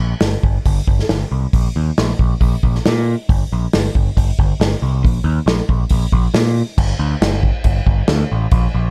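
Restless and bittersweet, this short indie rock clip moves at 137 BPM in 4/4 with a straight feel, set in G minor and tuned to A4 = 441 Hz. A growling picked electric bass, overdriven and bright with a direct, amped tone, carries the low end between G1 and Bb2 and sits up front from the very start. An acoustic drum kit enters at 0.2 s, played with bundle sticks in a studio room, combining crash cymbal and hi-hat with a punchy kick and a medium-tuned snare, and it is also placed close in the mix. The music moves into a new section at 6.8 s that runs to the end of the cut. The production is dark and dry, with little reverb around the two parts.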